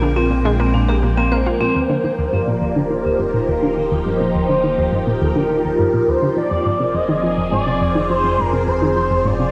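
Luminous and cosmic, this piece of sequencer-driven ambient space music moves at 104 BPM in Eb major, with a swirling phased string machine holding bright sustained chords and a round, nasal analog pluck riff with tape echo running throughout, while an airy, wind-like noise texture and metallic hard-mallet vibraphone arpeggios open the piece, a fat analog bass fades in from 1.8 s, and a smooth, expressive synth lead carries the melody from 1.5 s, inside a dark, wet concert-hall reverb.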